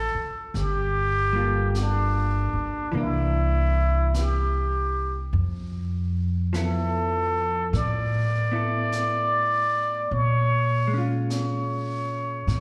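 A slow swing in 4/4 at 50 BPM, with lilting eighth notes, sets up this late-night, intimate jazz ballad, cut from a longer piece. A plunger-muted trumpet carries the melody up front, breathy and whispered with a soft attack and a wah-wah colour, and a slapback echo trails each phrase. Beneath it, a pizzicato upright bass sounds woody and close, while a vintage hollow-body electric guitar adds a dark, clean, picked accompaniment, compressed and also touched by slapback echo, sitting lower in the mix. A brushed drum kit slips in at 0.5 s, distant and roomy, with a high-tuned snare, hi-hat and a rolled-off top. The harmony drifts from Dm9 through Gm9, C9 and Fmaj7#11 to Bbm7, and the performance is heard as if through a venue's PA in a recital hall, with a small room's reverb around it.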